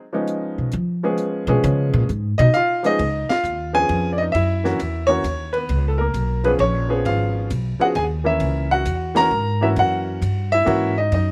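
A clear, vintage-toned upright piano carries the melody up front, its short-sustained notes sounding clear and woody across this relaxed jazz piano trio passage, cut from a longer piece. The waltz moves at 133 BPM in 3/4 with a lilting swing on the eighth notes, centred in Db mixolydian and shifting between Db7 and Gb7. The upright bass, played pizzicato on steel strings, sits close and growly with a woody bite and takes a solo turn in the opening seconds. Behind them, a compact cocktail drum kit stays in the background with dark, smooth cymbals, a high-tuned snare and a punchy kick, its top end rolled off for a warm, muted glow. The band lands together on accents at 3.2 and 9.1 seconds, and the whole trio sounds dry and intimate, with little reverb.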